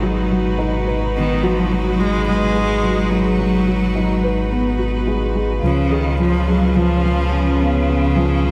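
Soaked in a lush hall reverb, this dreamy electronica fragment, cut from a longer piece, feels cinematic and intimate, moving at 107 BPM in a straight 4/4 in G# dorian. Up front, a bright, biting solo cello carries the melody with vibrato, an airy bow and a nasal, intense edge. Beneath it, a felt-muted upright piano plays a soft, mellow riff with thick felt and short sustain, coloured by analog chorus and delay. A muted string quartet, played con sordino with one player per line, holds veiled, dark chords with light vibrato, while a round, deep analog bass with a detuned, sustained tone anchors the low end. The harmony rests on G#m7 before shifting to C#7 at 5.6 seconds.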